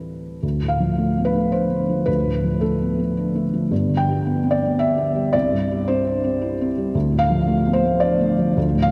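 Flowing in a rubato 3/4 at around 110 BPM, this short excerpt of neoclassical minimalist piano moves through Dm, G, C and back to Dm, with a reflective, intimate mood. A lone felt-muted upright piano plays from 0.0 to 8.9 seconds, ranging from G1 to G5, its thick felt giving a soft, dark, mellow tone that sits up front with audible action noise. Long cathedral reverb, with a 4.2-second decay, surrounds the instrument in the open resonance of a church or concert hall.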